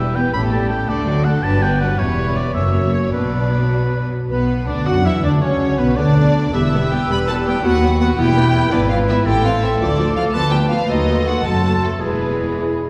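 Stormy and urgent, this quick classical-period movement for symphony orchestra moves in 6/8 at 109 BPM in B minor, with a rubato feel in a passage cut from a longer piece. A lush, expressive violin section carries the melody from the start, joined by a clear solo oboe and a focused second violin section in the background as counter-lines. Beneath them, a focused viola section fills in the accompaniment while a smooth, even cello section and a close, lush double bass section anchor the bass, all bowed with vibrato. At 4.3 seconds a distant, roomy clarinet and an airy flute section with soft attacks add further second lines, and from 4.9 seconds a vintage-toned French horn section holds sustained chords. The harmony grows restless in the second half, passing through diminished chords before settling on E, and the whole orchestra sounds from further back in a reverberant concert hall.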